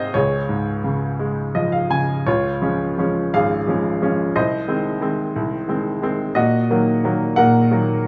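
Moving in 6/8 at roughly 55-61 BPM counted in dotted quarters, this brief classical passage unfolds with a flexible rubato that lets the phrases breathe. A clear baby grand piano plays alone throughout, sounding natural and up front, with a short sustain that keeps each note distinct across a range from Ab1 up to Ab5. The mood is peaceful and warm, settled in Db major, with harmony moving from Db to Ab/C at 4.4 seconds and then to Ebm/Bb at 6.4 seconds. An opening phrase gives way to a piano fill between 1.2 and 2.3 seconds, after which a new section carries the music onward until the fragment breaks off at 8.1 seconds. A moderate recital hall reverb surrounds the instrument with a gentle sense of space, fitting the lyrical, unhurried character of this short cut from a longer piece.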